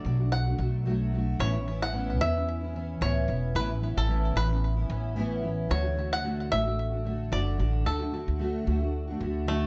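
A relaxed 111 BPM groove in 4/4 with a light sixteenth-note swing sets up this easy-going, sunny acoustic pop excerpt in A major, moving from Bm7 to Aadd9 and then D. A twangy, fingerpicked bluegrass banjo carries the melody, bright and percussive with plate reverb and delay. Beneath it a double-tracked steel-string dreadnought guitar, fingerpicked with fresh strings and audible finger squeak, and a thumpy, woody pizzicato upright bass on gut strings all sit up front throughout the 9.7 seconds, in a dark, warm mix with moderate studio reverb.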